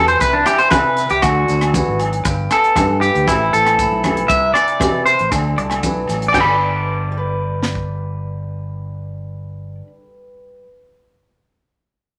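Joyful and carefree, this highlife guitar band clip, cut from a longer piece, moves at 117 BPM in a straight 4/4 in G major, cycling through C, D, G and Am. An up-front, twangy electric guitar at the edge of break-up plays arpeggios while a clean electric guitar solo runs until 6.3 seconds, over a boxy old ladder-braced acoustic guitar with audible finger squeak, a round fingered electric bass, and a tight funk drum kit with a high-tuned snare and rim clicks. Low-tuned, saturated congas and grainy maracas sit in the background while distant agogo bells ring until about 6.5 seconds, all bathed in a wet studio reverb.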